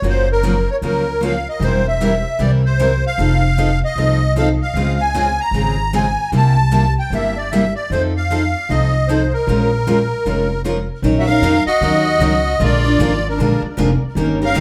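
Acoustic string swing in the jazz manouche style, fiery and virtuosic, cut from a longer piece: a reedy, shimmering musette accordion carries the melody up front with plate reverb and tape echo, over two picked steel-string acoustic guitars (one bright with finger squeak, the other full-bodied and set in the background) and a woody, thumpy pizzicato upright bass on gut strings, while a bowed violin with nasal vibrato adds a smooth second line from 11.2 seconds, all heard from further back in a wet studio room.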